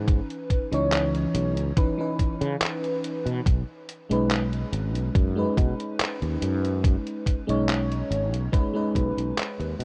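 A thumpy, sampler-style electronic kick sits up front from 0.1 seconds in this woozy, nostalgic vaporwave clip at 71 BPM, joined by a detuned 8-bit drum machine tapping out handclaps and hi-hat with a small-room character. An FM electric piano with a soft pad layer supplies lush, warbling, detuned chords with a subtle chorus and analog delay, moving from C#m9 to B69 over a growly, sustaining fretless electric bass. Light reverb and a cassette-tape sheen color the recording, and the passage, cut from a longer piece, fades out from 8.0 seconds.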